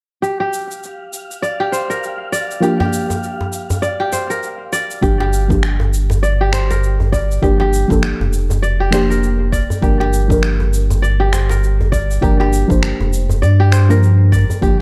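This meditative, mystical organic downtempo excerpt opens at 0.2 seconds with crisp, ringing fingerpicked kora arpeggios under a filter sweep and overdriven electronic shaker and finger snaps, joined at 0.7 seconds by an airy, breathy wind-like tuned noise texture in the background; a soft, evolving deep chord stab with chorus and sidechain pumping arrives at 2.6 seconds, soon joined by a tight, cracking djembe with metal rattles; and at 5.0 seconds a round, up-front analog bass with tube saturation and a deep, overdriven electronic kick enter, all in a dry, gritty swung groove that moves from Gm7 to Bb/G.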